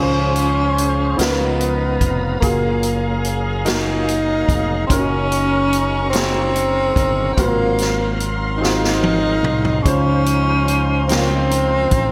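A breathy, subtone-rich tenor saxophone sings the soulful, jubilant melody up front in this slow 6/8 gospel passage, over a punchy fingered electric bass and an acoustic big-band drum kit with gated reverb that enters at 0.4 s and plays a fill from 8.6 to 9.9 s, while an intimate concert grand piano with audible action noise, a lightly overdriven tonewheel organ with slow rotary speaker and chorus vibrato, and a dark, floating bowed string section fill out the background, all framed by light reverb and bright 1980s-style digital production.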